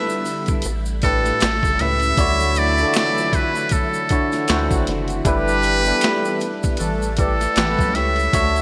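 A relaxed 78 BPM groove in 4/4 with a swung sixteenth-note feel sets up this smooth R&B and neo-soul fragment in D major, cut from a longer piece. A muted trumpet carries the melody up front, its metal mute giving a buzzy, breathy, thin tone with a soft attack in a jazz style, while a barky tine electric piano, lightly overdriven through a combo amp and treated with lush chorus, supplies accompaniment from the start. Behind them a vintage sawtooth string machine holds swirling sustained chords through ensemble chorus and phaser, and a tube shaker with finger snaps and group handclaps sits compressed and saturated in the background. A gritty, sampler-style boom bap kit with a thumpy kick, medium-tuned snare, hi-hat and handclaps arrives at 0.3 seconds under gated reverb, and a rubbery, bouncy square-wave bass with a dark, wave-folded filter pluck joins at 0.7 seconds. From 2.2 seconds a tight horn section adds octave-doubled pop-style stabs with light vibrato and delay, moving over chords such as Dmaj9, D7, G6 and A7sus4, all bathed in a lush hall reverb and a bright 1980s-style digital sheen.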